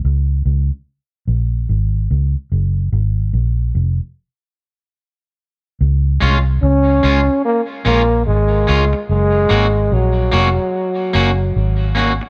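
A light reverb and small-room ambience give this spacious, hazy dub reggae excerpt an intimate feel, moving at 73 BPM in 4/4 with a swung sixteenth-note lilt in D-flat major. It opens on a break, with a dark, round, foam-muted vintage electric bass carrying the music up front, and a stop arrives at 4.1 seconds. At 6.2 seconds a twangy, picked electric guitar, slightly broken-up at the edge of distortion, joins as accompaniment, its sound trailing off in dub echo. Moments later, at 6.6 seconds, a breathy trombone takes the solo melody up front, its jazz-style phrasing colored by vibrato and also sent through dub echo. The harmony rocks between D-flat and G-flat chords, while the punchy bass holds the low end throughout.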